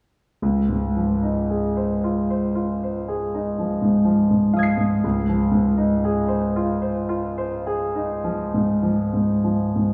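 Impressionist classical solo piano in 9/8 and D-flat major, serene and hazy, moving at a slow, rubato 32-42 BPM counted in dotted quarters and tuned to A4 = 436 Hz. A clear concert grand sits up front with an open tone and deep bass, sounding a Dbmaj9 chord from 0.4 s and ranging from Db2 to C7 until 9.9 s. The instrument is wrapped in a wet recital hall reverb with a 1.7 s decay, heard from further back in the room, in this short cut from a longer piece.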